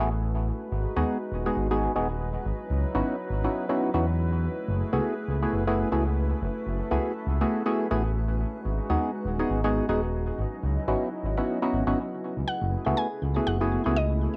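Moody and late-night, this deep house excerpt moves at 121 BPM in 4/4 with a 16th-note swing, sitting in F# dorian over chords of F#m11, G#m7 and C#m11. A warm, warbling analog pad with chorus and a hollow, organ-like percussive stab soaked in chorus, phaser and tape echo ride over a smooth gliding synth bass up front, while a cloudy granular pad with its own reverb drifts in the background from 0.4 seconds, and an ambient pad fades in across the whole passage. At 12.5 seconds a woody, round mallet-like synth pluck enters with the melody, roughened by 12-bit sampler grit, cassette tape and tape echo, all captured as a lightly reverberant home recording on cassette.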